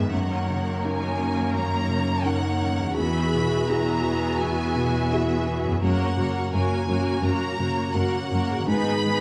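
Rubato in 4/4 at 84 BPM, this longing, sorrowful cinematic fragment sets a distant violin section singing the melody from E5 to B5 over a focused second violin line, with a soft, felt-muted upright piano whose action noise is audible, an expressive viola section using portamento, a smooth, even cello bass on E2 to G#2 and a thumb-plucked concert harp ringing arpeggios in the background, moving through D#m7/F#, Eadd9, F# and G#m in a dark, reverberant scoring-stage space.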